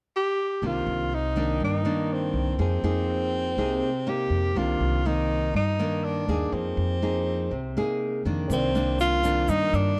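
A breathy tenor saxophone carries the melody up front with vibrato, subtone and scooped notes from 0.2 s in this intimate, melancholic bossa nova fragment in C minor at 122 BPM; at 0.6 s a bright, fingerpicked nylon-string guitar and a woody, thumpy pizzicato upright bass join it over Cm9 and Fm11 chords, and a very quiet, mellow baby grand piano with audible action noise and a grainy egg shaker in the background slip in at 8.5 s, all set in light reverb with a dark production.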